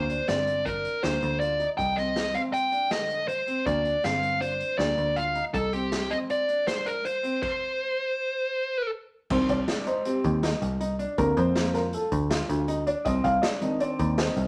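Brooding and intricate, this excerpt of progressive instrumental band music moves at 160 BPM in a straight 5/4 in C dorian. A fuzzed, compressed lead guitar carries the melody over bright, worn baby grand arpeggios, a foam-muted picked bass and a big-room drum kit with dark cymbals and a boomy kick, all in a wet studio reverb. After a stop at 7.4 seconds, a dark, mellow, vintage baby grand with long sustain takes a solo from 9.3 seconds as the bass returns beneath it.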